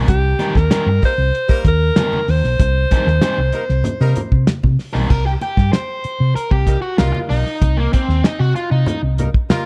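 A dry, close 1970s-style studio sound with small room ambience frames this driving, hypnotic funk excerpt at 96 BPM in C minor, resting on a Cm7 chord, with a thuddy, cloth-damped drum kit and a round, hollow-body fingered bass up front and low-tuned congas ringing in the background. A bright alto saxophone carries the melody with light vibrato until 4.5 seconds, while a clear, punchy horn section enters at 1.0 seconds with a tight second line in octave doubling. Biting, picked overdriven guitar with spring reverb accompanies throughout and takes a solo from 5.1 seconds to the end of the cut.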